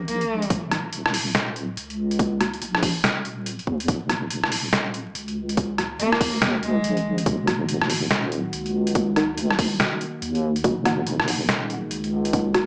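A half-time deep dubstep groove at 142 BPM in Eb minor, swung on the sixteenths, pairs a tight, tape-warm electronic kick with a gritty, pitched-down trip hop sampler kit of hi-hat, rim click and snare, both up front, while a deep, saturated wobble bass with chorus holds the low end on Eb minor throughout this dark, brooding excerpt. Muted, detuned chord stabs sit in the background under a filter sweep, phaser, analog chorus and dub echo, and a moody ambient pad with slow attack and long release enters at 5.4 s. A rich, biting bowed cello appears only in brief fragments with dub echo, returning at 6.0 s, all in a moderate room with vinyl crackle and a small-speaker sound.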